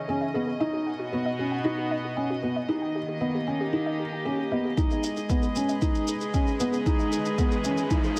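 A felt-muted upright piano leads this moving, cinematic piano and strings electronica, its soft, dark riff sitting up front with audible action noise and a touch of delay. Alongside it, a chamber string section holds sustained chords with light vibrato and a reedy, gut-string, period-style tone, while a warbly, dusty, lo-fi pluck traces arpeggios in the background, colored by chorus, delay and sidechain pumping. The music moves at 115 BPM in a straight 4/4 in G# minor, with the harmony passing from C#madd9 through B and D# before settling on G#m. At 4.8 seconds a build-up begins: a deep, layered electronic kick drum arrives with a shaker that is low-pass filtered, both carrying the character of a small room. A background riser joins at 5.7 seconds, and the whole passage sits in light reverb and digital ambience, cut from a longer piece.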